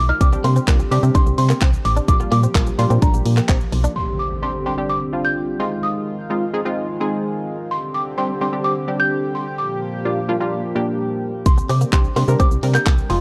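Steeped in light reverb and the warbly pitch drift of worn cassette tape, this confident, bittersweet dance-pop excerpt in C minor moves at 128 BPM, with a woody, buzzing soft-mallet marimba carrying the tape-echoed melody over a shimmering pulse-width pad and a funky, detuned sawtooth polysynth comp that both pump with the sidechain, while a round, dark FM bass, a bright, twangy clean electric guitar riff and a layered electronic drum kit with a punchy kick, handclaps, hi-hat and shaker drop out around 4.0 s, where an electronic impact hits, and return at about 11.5 s.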